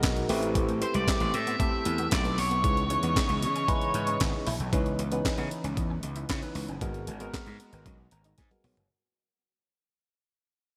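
Danceable, funky early-eighties boogie funk at 115 BPM, cut from a longer piece, where a compressed breakbeat sampler-style kit with thumpy kick, high-tuned snare, handclaps, hi-hat and toms drives up front beside gritty overdriven slap bass, a barky tine electric piano through phaser and slapback echo comps over Am9, C#m9 and G#m9 chords with a shimmering, very quiet pulse-width pad and a picked clean electric guitar riff underneath, a dark octave-fuzz lead guitar plays a short melody from 0.8 to 4.2 seconds, and the whole mix sits in a lush hall reverb with a big arena sound as it fades out from 4.7 seconds through an electric piano fill and a closing drum fill.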